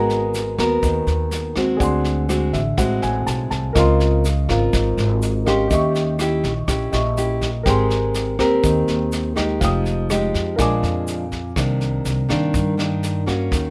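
A bright, full-bodied nylon-string guitar, fingerpicked up front with a touch of finger squeak, accompanies this wistful, smooth bossa nova excerpt at 123 BPM alongside a woody pizzicato upright bass, a warm concert grand piano that adds a fill at 2.3 seconds and drops out at 11.6 seconds, a vintage brush kit with punchy kick, rim click and a rolled-off top, and a grainy egg shaker in the background, all in light reverb over rich jazz chords moving from Abm9 to Cm9.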